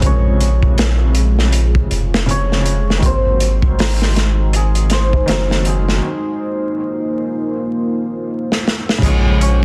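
Trip hop at 80 BPM in Bb minor with a swung, melancholic and cinematic feel, this excerpt sets a shimmering santur melody roughened by 12-bit sampler grit and tape echo against a mellow felt-muted upright piano with tremolo and audible action noise, a deep, warbling detuned pad washed in chorus and reverb, a round dub sub bass, and an up-front, saturated breakbeat kit with dark cymbals and a clipped snare that plays a fill from 8.5 s before a ringing concert harp arpeggio slips in at 9.0 s.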